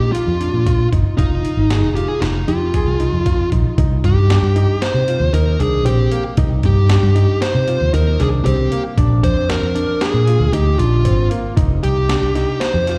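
Brooding and tense, this progressive instrumental piece moves in 5/4 at 116 BPM with a straight feel, heard as a short cut from a longer performance through a live venue's PA with light recital-hall reverb. A dark, fuzz-drenched lead guitar carries the melody up front with slapback echo and digital delay, while a boxy grand piano with audible action noise plays arpeggios and an amped fretless electric bass sits prominently underneath. A gritty, compressed boom bap sampler-style kit with a thumpy kick, high-tuned snare and hi-hat enters at 0.1 seconds, and the chords move from Bb and Fm7 to a long Cm9 at 3.8 seconds before closing on Bb and F7sus2.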